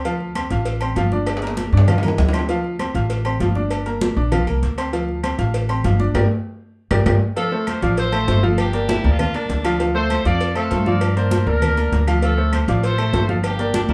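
A dark, thumpy upright bass sits up front in this driving, danceable salsa excerpt in D minor at 197 BPM, with a worn, present concert grand piano accompanying over Dm7 and Gm7 changes, ringing high-tuned congas, metal-shelled agogo bells and timbales, and a tight cowbell and woody claves in the background. At 7.4 seconds a punchy vintage horn section joins to take the melody, and a bright, forceful baritone saxophone adds a brief second line at 8.9 seconds, the band playing together in one room with moderate reverb.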